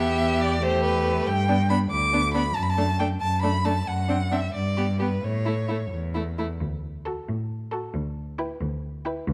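Close, detailed microphones and light reverb frame this graceful, cheerful classical-period movement for string quartet, a passage from a longer piece in D major that moves in a rubato 6/8 at 86-94 BPM in dotted quarters: the first violin sings the melody up front with a rich, expressive tone, vibrato, portamento and a soft attack, the second violin supports it with an even inner line, the viola gives clear, focused accompaniment, and the cello anchors the bass up front with a smooth top, before the music turns to a new section at 6.6 seconds.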